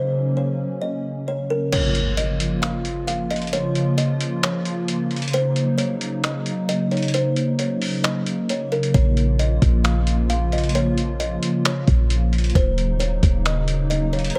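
A half-time 4/4 groove at 133 BPM anchors this ethereal, spacious cloud-rap excerpt in Bb minor, where a hollow, flute-like pad with ensemble chorus and sidechain pumping holds Ebm7 and Bbm chords under a woody, plucked kalimba melody dimmed by a low-pass filter and tape echo, before a gritty, pitched-down sampler-style drum kit of snaps, hi-hat and crash arrives with an electronic impact at 1.7 seconds, its thumpy kick joining at 8.9 seconds alongside a deep, boomy 808-style sine bass, all under light reverb.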